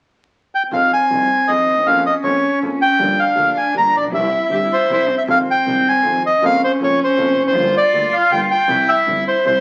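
A rubato tango in 3/4 at 158 BPM, this passionate, melancholic fragment in F minor is cut from a longer piece and heard through a very old 78 rpm record with vinyl crackle and wet studio reverb. The bandoneon carries the melody from 0.5 seconds, reedy, dark and full, sitting dry and up front as if close-miked. Just after, at 0.7 seconds, a single bowed cello joins with a second line, played sul tasto with light vibrato, a soft attack and an airy, intimate bow. Beneath them, a warm concert grand piano supplies accompaniment with a deep bass, while one bowed double bass, clear and focused with vibrato, holds the bass in the background. The harmony circles through Fm7, Bbm7/F, Gm7 and C, and the same progression returns when the second section begins at 5.3 seconds.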